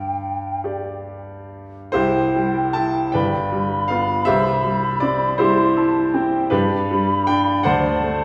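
Heard from further back in a recital hall with a wet reverb, this tender, lyrical romantic classical excerpt in C major moves at a rubato 45-54 BPM in 6/8, as a bright, up-front grand piano with long sustain accompanies a mellow, hollow concert flute that sings the melody between G5 and C6 with soft attacks and vibrato, over harmonies that pass through C, G7, G and D7.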